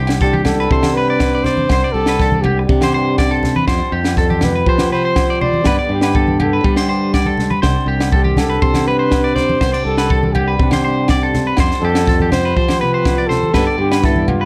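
A boxy, fingerpicked parlour acoustic guitar sits in the background beneath twangy, clean electric guitar arpeggios and a growly, punchy fingered bass, opening this danceable, straight-feeling highlife excerpt over suspended and added-ninth chords. A dry cocktail kit with a high-tuned snare and punchy kick sits up front, joined by ringing, compressed agogo bells in the background and close, low-tuned congas. From 0.2 seconds, a breathy, dark trumpet carries the solo melody with soft-attack vibrato in an intimate, whispered pop style, bathed in plate reverb.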